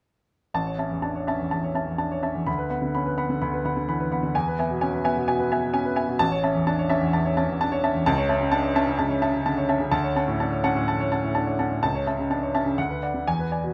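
Brilliant and sparkling, this short cut from a longer classical virtuoso piano study moves at 127 BPM in 4/4 with a rubato feel, in A major. A clear, open baby grand plays alone from 0.5 to 13.7 seconds, its long sustain ringing up front across a range from A1 to B5, while the harmony travels from A through Bm/D, E, A/C# and Dmaj7. Close, detailed microphones and light reverb keep every note crisp and present.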